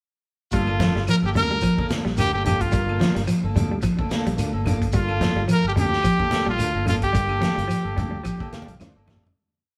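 Afrobeat at 109 BPM in G minor, a driving, funky groove of just over nine seconds in which a bright, up-front trumpet carries a motif-based melody of call phrases over a syncopated fingered bass riff, a punchy vintage kit with a rolled-off top, and background shekere, low-tuned congas and very quiet woody claves tapping a five-stroke time line. Two semi-hollow guitars fill the middle, one playing a dark, clean fingered arpeggio ostinato through vibrato and analog delay and the other strumming upper chord shapes, while a reedy combo organ with heavy vibrato adds syncopated rootless stabs. The band plays live in a stone room with a wet reverb, and the piece fades out from 7.1 seconds as the organ and then the drums play closing fills.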